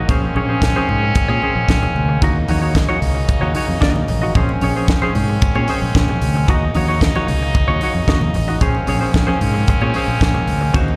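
Glamorous and sultry, this disco cut, taken from a longer piece, moves in a straight 4/4 between Bbm9 and Ebm7 chords, with a tight, dry funk drum kit up front, its high-tuned snare and tight kick sounding beside a fingered electric bass that sounds direct and amped. A clean, compressed semi-hollow electric guitar with a hollow-body warmth plays accompaniment through subtle chorus and slapback echo, while a muted French horn section holds stopped, nasal, metallic chords with a soft attack from a distance. Thick-skinned congas, also touched by slapback echo, enter at 0.4 seconds in the background, and the whole performance comes across as a live gig heard through the venue's PA in a recital hall's light reverb.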